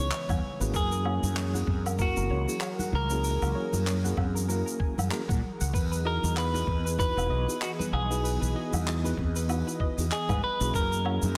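A relaxed 96 BPM groove in 4/4 with a 16th-note swing carries this warm, smooth sunset chillout excerpt, built on a gritty, thumpy electronic kick, distant brushed jazz kit with handclaps, hi-hat, shaker and woodblock, and quiet, soft-handed congas, while a dark, round fretless bass sits up front. A clean, picked electric guitar carries the melody with digital delay over a mellow tine electric piano, an airy, breathy pad with chorus and a soft pluck playing arpeggios in the background. The harmony moves from C#m7 to F#9 and then Emaj7, returning to F#9 at 10.7 seconds, all in a small room with light reverb and a dense, heavily limited master.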